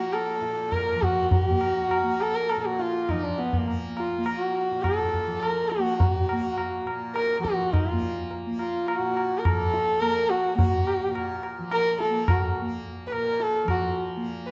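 A dark, woody bowed sarangi carries the melody up front, gliding with light vibrato and portamento over its sympathetic strings, in this serene, devotional Hindustani classical passage taken from a longer piece, set in 4/4 at 104 BPM and gradually speeding up. A softly plucked, buzzing tanpura drone shimmers underneath throughout, while high-tuned, ringing tabla plays from 0.1 to 13.9 seconds. The dark, warm production, tuned to A4 = 438 Hz, sits in the wet reverb of a scoring stage.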